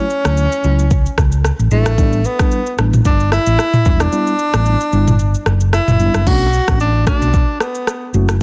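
A breathy tenor saxophone opens this sunny, breezy afrobeats excerpt at 112 BPM, singing an up-front jazz-style solo with light vibrato, subtone and scooped notes over a mellow tine electric piano bathed in lush chorus, moving from Dmaj9 to A7sus4. An electronic, produced afro-pop kit with a deep kick, rim click, shaker, toms and crash joins with a dark, round hollow-body bass, all riding a gentle 16th-note swing. The kick drops out from 4.1 to 6.3 seconds, after which the harmony settles on Bm7, and the dense, heavily limited master keeps the sound dry and close.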